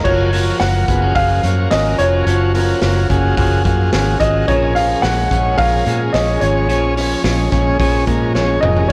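A blown-out, overdriven recording with light reverb carries this breezy, bright jangly indie pop excerpt at 108 BPM in F# major, where a woody, slightly detuned upright piano with delay sings the melody over a buzzy combo organ, a slightly broken-up electric guitar arpeggiating through lush chorus, a round, foam-muted bass up front, a very quiet swirling phased string machine entering at 0.5 seconds, and a gritty, boomy garage drum kit that closes on a fill at 8.3 seconds, moving from F#maj7 to A#m7.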